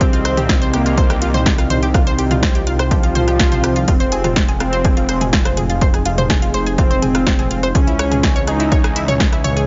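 From the first second this dark, melancholic melodic techno excerpt in F minor at 124 BPM sets a punchy, up-front electronic kick and a techno kit of smooth hi-hats, rim clicks, snare and toms with studio reverb under a menacing, tube-saturated detuned saw bass that pumps with the sidechain, while a lush, full-bodied pluck spins digital-delayed arpeggios, a thick, bright unison lead with vibrato sings through lush chorus and dub echo, and a softly warbling vintage analog pad and a deep, moody ambient pad with a moving notch hold the background over Cm, Fm and Dbm chords, as a faint electronic swell enters at 3.1 seconds.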